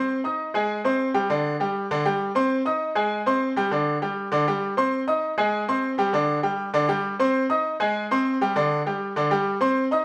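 Caught live in a stone room with a wet, lingering reverb, this fiery, passionate Latin fragment features a solo upright piano, brilliant, woody and up front, alternating between Abmaj7 and Csus2 chords across its 10 seconds.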